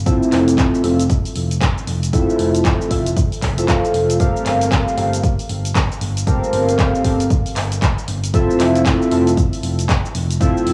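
Glossy, retro polysynth stabs with chorus open this moody, swung deep house excerpt alongside a punchy electronic kick and an analog drum machine of cabasa, handclaps and hi-hat, with a warm fingered electric bass entering at 0.3 seconds beneath chords moving from Fmaj7 to Gm11 and returning to Fmaj7; the synth carries a filter sweep and analog delay, sidechain pumping shapes both synth and bass, and cassette tape colours the synth and drums within a light reverb and small-room home-recording ambience.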